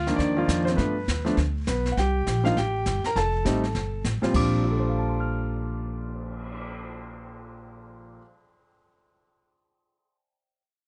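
An up-front baby grand piano with a natural, long-sustaining tone carries the melody in this relaxed, sophisticated swinging jazz trio fragment, over a woody, thumpy pizzicato upright bass and an airy brushed drum kit with dark cymbals and a boomy kick, all in light reverb with a softened top end, the drums stopping at 6.6 seconds while the bass and piano carry on to 8.2 and 8.5 seconds.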